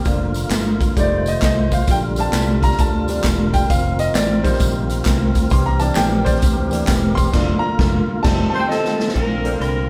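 A clear grand piano with audible action noise takes the solo from the start over a fat, lightly overdriven tonewheel organ with key click and fast rotary speaker, while fingered electric bass, an up-front swinging big-band drum kit with punchy kick, and tambourine and handclaps (stopping at 7.2 s) drive this jubilant uptempo gospel piece in Bb major at 132 BPM, until a band accent at 7.3 s ushers in a mellow saxophone section carrying the melody at 8.5 s, followed by a drum fill at 8.7 s.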